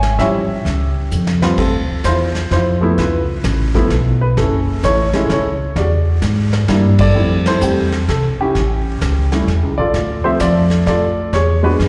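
A sophisticated jazz piano trio in a swinging 3/4 at 129 BPM, heard as a cut from a longer piece captured live through a venue's PA with the reverb of a recital hall. An upright piano carries the melody across a range from F3 to G#5, its tone woody and slightly detuned with short sustain, up front and touched by a slapback echo. Pizzicato upright bass on gut strings sits prominently underneath, thumpy and dark, ranging from F#1 to A2. A vintage brush kit, recorded in a small room with dark cymbals, a fat snare and a punchy kick, stays lower in the mix and adds fills at 1.1 and 6.2 seconds, with the band hitting accents at 6.9 and 7.4 seconds. Richly altered harmony opens the passage, moving through chords like A7b13, C#7alt and Gm69 before the music settles into F major at 7.2 seconds, where a second section cycles through Fmaj7, A7, Dm7 and E7.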